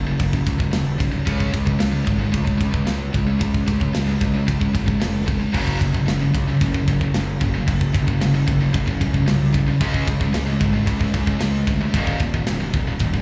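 A straight 4/4 pulse at 112 BPM drives this epic, aggressive heavy metal excerpt, played as a live gig heard through a club PA with studio reverb. A bright, high-gain guitar riff sits up front alongside a growly, fuzz-laden bass, while a tight drum kit with a gritty, saturated tone and rolled-off top strikes kick, snare, ride and crash from 0.2 seconds. A second distorted guitar joins in the background at 5.5 seconds, thickening the riff over power chords on Gb5, Db5 and Eb5.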